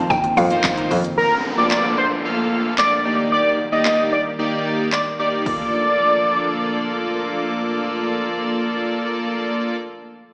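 An up-front, octave-doubled sawtooth lead with chorus, vibrato and tape echo carries the melody from 1.2 s in this summery, euphoric dance-pop excerpt at 112 BPM in Bb major, riding over a fat, warbling vintage polysynth, mellow string-machine cellos, punchy house drums, brief woody FM mallet plucks, a short burst of biting bowed double bass, a faint jingly tambourine and a background downlifter, all heard through a club PA with a small-speaker, recital-hall sheen.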